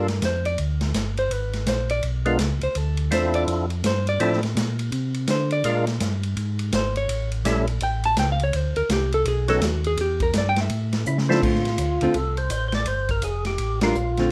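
Soul jazz organ trio in a smoky, bluesy mood, swinging briskly at 166 BPM in 4/4. A dark, clean hollow-body jazz guitar solos up front until 11.4 seconds over a mellow, round tonewheel organ bass with chorus vibrato and slow rotary speaker, while a fat, lightly overdriven percussive organ carries the melody from 2.3 seconds through slow rotary. A distant, roomy big-band kit with a boomy kick and rolled-off top plays a fill into a new section at 11.4 seconds, where the band hits an accent at 13.8 seconds in a moderate club reverb.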